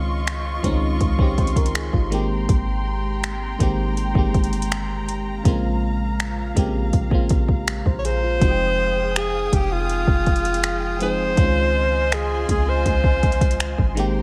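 Longing and moody, this contemporary R&B passage, cut from a longer piece, moves at an unhurried, straight-feel pace in 4/4. A glassy FM electric piano with a bell-like attack and warbling chorus carries the accompaniment from the start. A close, intimate string section sustains smooth bowed chords beneath it, played sul tasto with gentle vibrato. A deep, boomy 808-style bass anchors the low end, while a soft-kicked electronic drum kit of finger snaps, metallic hi-hat and kick sits up front from 0.3 s, roughened by vintage 12-bit sampler grit and re-recorded in a large room. At 8.0 s a warm alto saxophone enters up front with a jazz-style solo melody, played with subtone and vibrato and trailed by tape echo, shortly before the harmony shifts to a new section at 8.4 s. A digital ambience surrounds the mix, adding a dusky sheen to the lush maj9 and minor-seventh chords.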